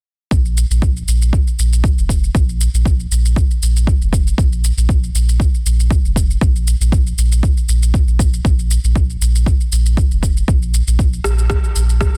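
Spiritual and hypnotic, this afro house excerpt moves at 118 BPM in 4/4 with a light swing on the sixteenths. A deep, overdriven electronic kick drum sits up front, layered and produced. Alongside it, a warm, round, sine-like sub bass, also up front, with a fast attack and sustained tone holds between F1 and Bb1, colored by tube saturation and sidechain pumping, while a filter sweep shapes it from 0.3 to 12.2 seconds. An electronic shaker and rim click, also overdriven and layered, sit lower in the balance and fill in the groove. Digital ambience surrounds the parts, and the dense, heavily limited modern master carries the whole sound as it runs from 0.3 to 12.2 seconds in a single section cut from a longer piece.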